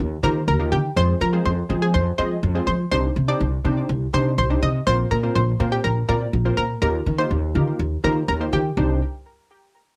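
This excerpt has the lightly reverberant, homespun sound of a cassette home recording, cut from a longer dance-pop piece in straight 4/4. Its driving, energetic mood rests on an upright bass played pizzicato on steel strings, woody, dark and thumpy, sitting up front for the whole stretch. From 0.2 s a funky polysynth comp fills the middle with punchy, detuned sawtooth and square-wave chords, shaped by a filter pluck and given a mellow chorus sheen. Above it, an analog pluck carries the melody, round and bright with a fast attack, a short decay, chorus and a cassette-tape tint, placed forward in the mix until 8.6 s. The harmony moves through Ebadd9, Fm, Cmadd9 and Bbsus2, returns to Ebadd9, and lands on Cmadd9 as a new section begins at 8.8 s.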